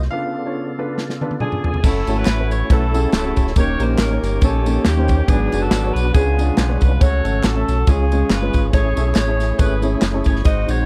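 Uptempo gospel at 139 BPM in F# minor, solemn and fervent, with a light swing and a dry, close 1970s-style studio sound in a small room. After a brief break where a clear baby grand piano rings out a single slapback-echoed note and the drums and tonewheel organ fill in, a tight, punchy saxophone section with light vibrato carries the melody from 1.4 s over woody upright piano accompaniment, key-clicking organ swirling through a fast rotary speaker in the background, deep sine sub bass with octave up front, and a punchy acoustic drum kit. From 1.8 s, band-limited tambourine and group handclaps join in the background as the harmony moves from F#m7 through altered dominants to a closing Amaj7.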